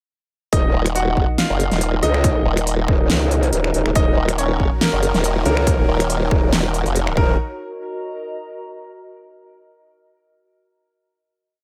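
A growling, saturated bass with changing wobble speed drives this menacing, chaotic heavy wobble dubstep piece in Eb minor at 140 BPM in a half-time feel, joined by a pulse-wave formant-sweep wobble bass, a punchy electronic kick and a big-room kit of huge snare, crisp hi-hats and finger snaps, while a bright grand piano with audible action noise repeats an octave riff through dub echo, huge detuned supersaw chords enter in the background at 4.0 s, and a warbling, lo-fi tape-like pad pumps beneath everything until it rings on alone as the final chord, closing at 9.1 s.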